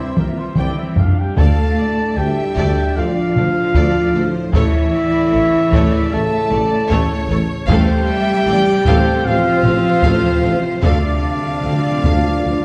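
Cinematic, epic orchestral film score in D minor at 76 BPM, dark and heroic, where a compressed, saturated taiko ensemble plays an early drum fill under a soft-attack violin melody, a distant, intense second violin line, portamento violas, close cellos, a very quiet double bass section and mellow tuba, brooding French horns and trombones holding chords, mellow trumpet stabs, and hard-mallet timpani entering with a fill at 10.8 s, all moving through C, Dm, A and F/A in a reverberant concert hall.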